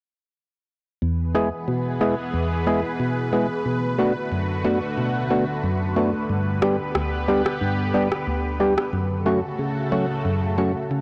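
Hypnotic and tough, this dancehall excerpt sets a dark, hollow, nasal percussive organ stab with chorus against a lush, thick, detuned unison pad treated with chorus and phaser, moving through E, Bm7, G and F#m, while a gritty electronic rim click sits in the background from 6.6 to 8.9 seconds, all bathed in a lush hall reverb and a blown-out, overdriven sound.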